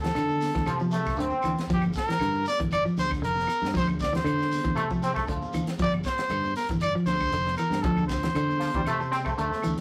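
Afrobeat at 117 BPM in G dorian, this funky, hypnotic passage is cut from a longer piece and rides a straight 4/4 groove through chords moving from D7(no3) to Gm7, Dm7 and G5. A brilliant trumpet carries the melody up front with light vibrato and scooped notes, while a clear, punchy trombone section adds a second line with a vintage touch and slapback echo, first briefly at 0.7 seconds and then returning from 4.8 seconds. Underneath, a dark, clean semi-hollow electric guitar plays fingered arpeggios bathed in spring reverb and slapback echo, and a round fingered electric bass anchors the low end. A dry, polished funk drum kit with a high-tuned snare and tight kick drives the groove on hi-hat, kick and snare. In the background sit a grainy shekere, woody claves and quiet, ringing high-tuned congas, the shekere and congas sounding distant as if in a large room. The whole has the rough feel of a rehearsal-room recording, with moderate studio reverb and a saturated glow.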